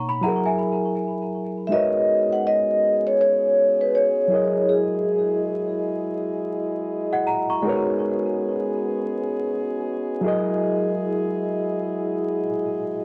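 Lo-fi hip hop at a dreamy, cosy 81 BPM swing, built on a barky, reedy, lightly overdriven electric piano that runs throughout, while a bell-like, slightly out-of-tune celesta adds delicate touches at the opening and again near 7.1 seconds, a mellow soft-mallet vibraphone with slow motor vibrato carries the melody from 1.7 to 5.4 seconds, and a dark, distant French horn section holds tight chords from 1.7 seconds over G#m11 and F#13 harmony, all filtered through a muffled cassette sound with vinyl crackle in a small room.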